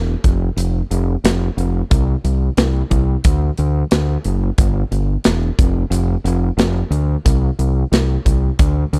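A straight, confident 4/4 groove drives this classic rock excerpt, with a growling, overdriven fingered electric bass starting at 0.0 s, low and up front. A big acoustic rock kit joins at 0.2 s, its punchy kick, medium-tuned snare and hi-hat carrying a roomy heft. The close, dry 1970s-style studio sound keeps both parts immediate and forceful.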